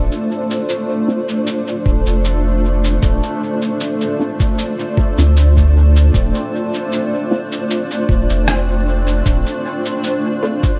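Opening on a cloudy, detuned granular pad holding sustained chords in its own reverb, a round, soft sub bass up front and a bubbling, resonant stepped-filter texture with chorus, this deep, spacious ambient dub excerpt at 77 BPM in D minor rests on a Dm7 as muffled, pitched-down electronic cabasa and rim click with dub echo join, a muted, nasal filtered chord stab drifts in the background from 1.1 s under a filter sweep with phaser, lush chorus and echo, a thumpy, tape-warm electronic kick arrives at 1.9 s, and the bass falls away at 9.4 s, the whole excerpt set in a light digital ambience.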